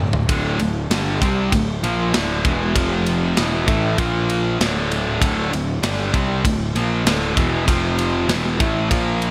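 A bright, 1980s-style digital production with light reverb and a small-room feel frames this heavy, driving hard rock fragment, cut from a longer piece. A sludgy, double-tracked overdriven guitar riff sits up front over a punchy, fuzzed electric bass, while a tight metal drum kit with kick, snare, toms and ride opens with a fill at 0.0 seconds, its rolled-off top wrapped in gated reverb. The riff cycles through D5, F5, Esus4 and Bb5 chords.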